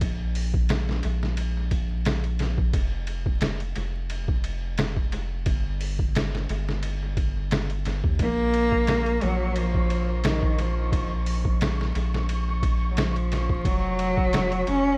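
Hypnotic and brooding, this trip hop excerpt moves at 88 BPM with a light 16th-note swing. A gritty, pitched-down sampler-style drum kit with a thumpy kick, a medium-tuned snare, hi-hat and ride sits up front with studio reverb and analog delay, over a deep, round dub sub bass. A bowed cello with vibrato enters at 8.2 seconds on a Bb minor chord, carried by dub echo, and a faint flickering granular texture joins at 9.2 seconds, all in a dry but echo-heavy mix dusted with vinyl crackle.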